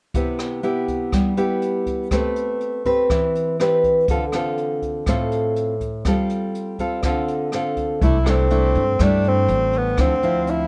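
A fingerpicked nylon-string guitar opens this relaxed, sunny bossa nova excerpt in C major at 122 BPM, its classical tone up front with an occasional finger squeak as it moves through Cmaj7, Am9, Dm7 and G9sus4. A jazz brush drum kit plays alongside it from the start, with brushes on hi-hat and rim click over a boomy kick, sounding natural in a studio room. At 8.0 seconds the music shifts to a new section on C69 and Dm9. Here a breathy tenor saxophone takes the solo melody with a mellow subtone, light vibrato and scooped notes, set in plate reverb. An upright bass enters at the same moment, pizzicato and growly, with a woody, bright bite from steel strings. A very quiet grand piano adds a warm, intimate touch on A4, its action noise audible and its sustain long, while the overall sound stays dry.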